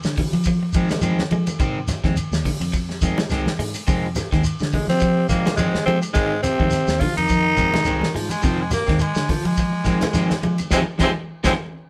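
Defiant and hypnotic, this afrobeat groove at 105 BPM sits on a single Fm7 chord in F dorian, with a swung sixteenth feel carried by a dry, up-front soul drum kit with dark cymbals, a round foam-muted fingered bass, grainy shekere, low-tuned congas in the background and very quiet woody claves. Two slightly broken-up picked electric guitars fill the middle, one placing dark stabs in the background and the other playing arpeggios, all in a live room with light reverb. At 4.7 seconds a breathy, gritty tenor saxophone takes the lead up front over a whispered trombone second line, and a raspy baritone saxophone with scooped notes joins at 7.9 seconds before the band hits an accent at 10.7 seconds in this excerpt.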